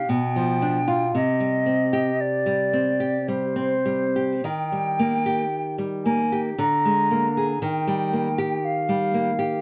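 In a rubato 3/4 at 49-60 BPM, this yearning, melancholic romantic duo in C minor sets an airy, distant concert flute singing an expressive, tongued melody with vibrato over a small, up-front nylon-string guitar whose fingerpicked accompaniment moves from G7/B through Cm, Eb and Bb7/D back to Eb, all caught by close, detailed microphones in light reverb across this 9.6-second excerpt from a longer piece.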